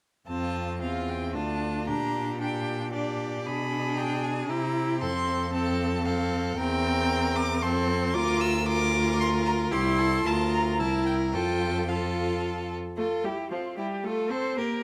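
Opening at 0.3 s, a lively, cheerful classical-period string quartet movement in F major moves at a quick 114 BPM in 3/4. A distant, smooth first violin carries the melody up to E6, while a close, clear second violin traces a second line, a focused viola fills in the accompaniment and an up-front cello anchors the bass, all bowed with vibrato in a moderate recital-hall reverb captured by close, detailed microphones, until this portion of a longer piece breaks off on an A minor chord at 14.0 s.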